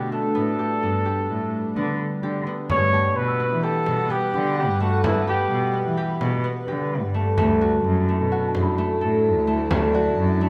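A soft-attacked, vibrato-laden flugelhorn sings a jazz-tinged melody over a morphing, chorused and phased wavetable pad, ringing fingerpicked harp arpeggios and a veiled, muted bowed cello bass in this shimmering, hopeful chamber piece in 5/4, with a deep, distant frame drum joining at 2.7 s, a delicate bell-like celesta glinting in the background from 2.9 s, and the horn falling away at 6.2 s.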